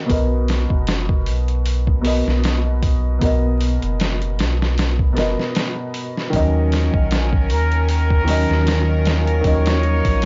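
Smoky and cinematic, this trip hop fragment opens on a muffled, pitched-down sampler drum kit with a thumpy kick, a round dub sub bass, and a felt-muted upright piano run through harmonic tremolo, tape echo and a filter sweep, all over a dry, gritty recording with vinyl crackle. A floating studio string section enters at 6.3 seconds with its chords as the harmony moves from Bmaj7 to Ebm7, and a plunger-muted trumpet takes the melody at 7.5 seconds with scooped, jazz-style wah-wah notes. At 9.3 seconds a tense, bowed-like drone slips in, barely audible beneath the rest.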